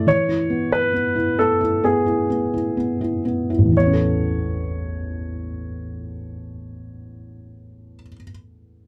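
A clear, polished baby grand piano carries a brief melody over a soft, felt-muted upright piano whose dark, intimate accompaniment sits close up front, both starting together in this hopeful, tender pop fragment cut from a longer piece. The music slows over its first 3.8 seconds on an E chord, then settles onto an Aadd9 as the second section begins. The baby grand stops at 8.1 seconds while the upright continues briefly, all captured in a dry, close 1970s-style studio sound with light reverb.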